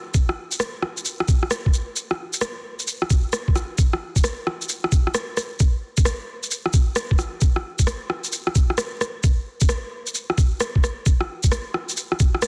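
Future garage with a rainy, wistful mood, built on a swung sixteenth-note feel in this brief cut from a longer piece. A muffled, pitched-down electronic kick drum with a thumpy, tape-warm, sampler-style weight sits up front, beside a layered electronic shaker and rim click given a gritty overdrive. Light reverb and a digital ambience surround the parts, while vinyl crackle and a dense, heavily limited modern master give the sound a close, compact finish, with the music moving into a new section at 3.8 seconds.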